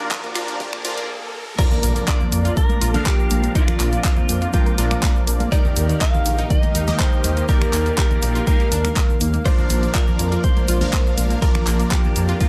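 Hopeful, euphoric progressive house at 122 BPM in Bb major, cut from a longer piece, where a punchy layered kick and a deep house kit with filtered hats, claps, snaps and crash play from the start under a short build-up of riser, swell and a stop in the background, which drops at 1.6 seconds into a grainy shaker, very quiet congas and a deep, rumbling detuned saw bass, while a lush warbling pad, round evolving analog pluck arpeggios with delay, phased supersaw stabs and a clean, direct-recorded electric guitar melody with lush chorus all pump over Ebmaj7 and Bb chords.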